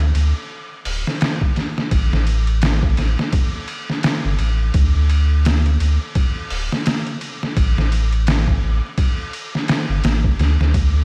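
A smoky, melancholic trip hop excerpt with a light reverb and a haze of vinyl crackle, moving at 85 BPM in 4/4 with a 16th-note swing. A deep, round sine sub bass sits up front from 0.0 to 11.0 seconds, its fast attack and sustained, mellow tone reaching from D1 to D2. Beside it, a pitched-down, muffled sampler-style drum kit with overdrive brings a thumpy kick, medium-tuned snare, hi-hat and ride, compressed and re-recorded in a small room.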